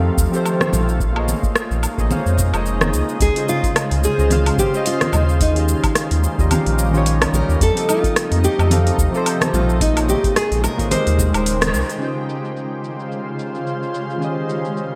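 A fingerpicked nylon-string guitar carries the melody from 3.2 s in this sunny, smooth sunset chillout excerpt, its classical tone marked by finger squeak and delay, over mellow, chorused electric-piano-like synth keys, an ethereal pad with octave-up shimmer, a round, dark analog bass up front, a deep, overdriven electronic kick, a tape-warm R&B drum kit with metallic hats, rim click, shaker and woodblock, and vintage congas in the background, inside a lush hall reverb and bright 1980s-style digital production, with a band accent at 11.6 s.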